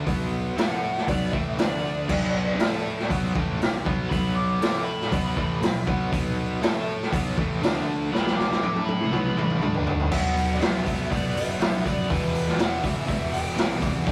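A raw garage drum kit sits up front with a boomy kick and medium-tuned snare, its gritty, saturated sound driving this menacing hard rock excerpt as a dark lead guitar through a small cranked amp solos from 0.6 seconds over background riffs from an overdriven semi-hollow guitar with tremolo, a scooped high-gain guitar and fuzz-toned picked bass, joined at 2.1 seconds by a very quiet double-tracked distorted guitar, with a drum fill at 8.1 seconds leading into a new section, all in a rough rehearsal-room sound.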